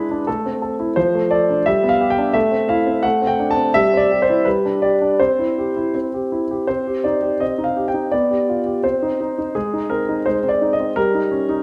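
A 2/4 pulse at 85 BPM moves with a flexible, rubato feel through this short cut from a classical-period piano sonatina, cheerful and graceful in spirit. A clear grand piano plays alone from start to finish, staying between F3 and A5, its intimate, polished tone sitting up front with long sustain and audible action noise. The opening part rests in C major, moving through chords such as Am, Dm7/F, G and C, before the music turns to C minor at 6.7 seconds. There the harmony darkens through Cm, G7/B and Ab, reaching Eb7/G near 11.0 seconds as the passage breaks off. A moderate recital hall reverb with a 1.4 second decay surrounds the instrument and lends the playing a natural concert setting.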